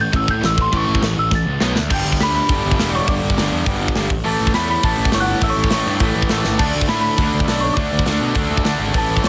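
A straight, driving 4/4 at 204 BPM powers this rowdy, rebellious punk rock excerpt: an up-front acoustic drum kit with a tight kick and rolled-off top drives it, with fills at 1.3 and 6.4 seconds, under a bright, double-tracked overdriven garage guitar riff and a growly fuzz bass, while a delicate, bell-like small celesta carries a sweet, airy melody on top, all in a dry, dense, heavily limited modern mix.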